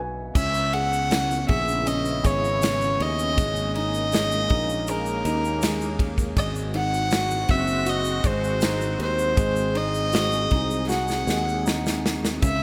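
A brief grand piano fill with audible action noise opens this melancholic, longing pop ballad at 80 BPM alongside a growly fretless electric bass, before a dark, nasal violin played sul tasto carries a floating melody over a detuned sawtooth pad with chorus, a punchy acoustic drum kit with gated reverb and a grainy tube shaker in the background, moving through C#m7, G#sus2 and G#7 in a bright 1980s-style digital production with plate reverb, and closing on a drum fill from 10.9 s to 12.4 s.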